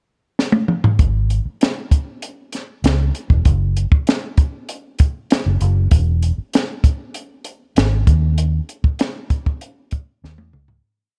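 A compact cocktail drum kit opens the piece with a fill at 0.4 seconds, its high-tuned snare and punchy kick sounding smooth and dark with a rolled-off top. At 1.0 seconds a vintage muted fingered electric bass joins for the verse. Its foam-muted, round, amped tone carries a melodic soul line with muted ghost notes between E1 and E2. This is a short, lush piece of 1970s-style soul at 98 BPM in 4/4 with a straight feel, tuned to A4 = 439 Hz, and its mood is cinematic and bittersweet. Both parts sit up front in a dry mix, the drums holding a smooth mid-tempo groove in their small-room sound. A fade-out begins at 8.4 seconds, and a final drum fill closes the piece.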